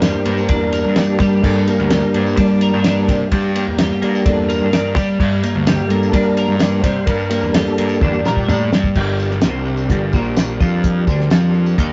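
Mysterious and dark, this psychedelic rock passage, cut from a longer piece, moves at 128 BPM in a straight 4/4, centred on G minor in G dorian. An overdriven tonewheel organ carries the lead with gritty, percussive sustained chords through a slow rotary speaker and chorus vibrato, taking a solo from the start until 9.0 seconds. A bright, twangy twelve-string electric guitar plays a clean, compressed riff through its own rotary speaker, while a fuzz-soaked picked electric bass sits up front beneath it. The cloth-damped drum kit sounds thuddy and dry, with a fat snare, tight kick and dark cymbals, and it plays a fill from 8.0 to 9.0 seconds before the music shifts into a new section. A jingly tambourine stays in the background, and the whole performance has the rough, muffled character of a rehearsal-room recording in a small room with moderate reverb.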